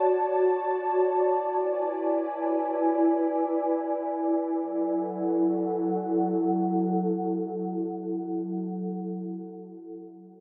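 In free time, this hazy, ethereal dream pop excerpt in F# minor rests on a single airy pad holding sustained chords from 0.0 to 8.2 seconds, moving from Dmaj7/F# to E7 and settling on F#m7 at 4.5 seconds. The detuned, mellow pad sits up front with slow attacks, long releases and an ensemble chorus, and a filter sweep shapes it through the opening 4.5 seconds. A huge ambient reverb with a 4.7-second decay drenches the sound in a wet, floating haze.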